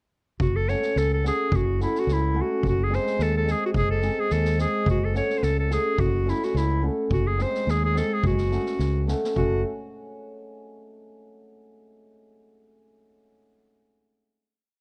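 A dry, close small-room recording with a 1970s studio character carries this short, restless Balkan wedding-band piece in 2/4 with a light swing. A bright, smooth-topped clarinet leads up front with virtuosic, motif-based song phrases and a slapback echo, over a direct fingered electric bass playing root and fifth on the main beats and a street-band kit with a boomy kick and medium-tuned snare. From 0.7 seconds a mellow, shimmering cimbalom adds tightly voiced off-beat chords, and the band closes on a final chord at 9.4 seconds.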